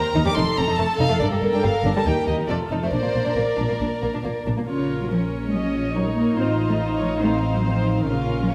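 Graceful and cheerful, this brief cut from a longer classical-period movement for string orchestra moves at a quick 141 BPM in a straight 4/4, opening in Bb major before darkening to Bb minor at 4.7 s. The first violins carry the melody with vibrato and a soft, bowed attack, while the second violins play a supporting line with a smooth top and light vibrato. Violas fill in the accompaniment with an intimate sul tasto tone, and the cellos, dark-hued, join the double basses on the bass line from 0.1 s. The harmony moves through F, Gm, Eb and F back to Bb, then turns to Bb minor and lands on F7/A at 6.4 s. Every section sounds close and chamber-like, set in a moderate scoring-stage reverb that gives the ensemble a gentle, rounded glow.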